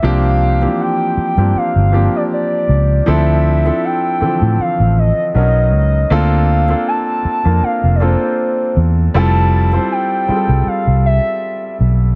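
Set in a small room, this smooth, romantic contemporary R&B excerpt moves at 79 BPM with a light sixteenth-note swing in F major, as a gliding, sine-toned portamento lead with vibrato, chorus and tape echo carries the melody above a polished grand piano with long sustain and a dark, round, foam-muted fingered electric bass sitting up front, through chords from C7sus4 and Dm9 to a closing Fmaj7.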